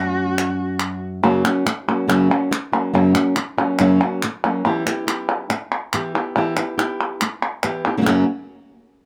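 Crisp, saturated palmas hand claps drive a straight 4/4 pulse from 0.4 s in this intense, fiery flamenco excerpt cut from a longer piece. The fingerpicked flamenco guitar carries the melody up front with audible finger squeak and a plate reverb, moving from F#5 through F# and Em. A dark, woody cello, played by a single player, adds a bowed sul tasto line with vibrato, heard close only until 1.0 s, all set in a small, moderate room.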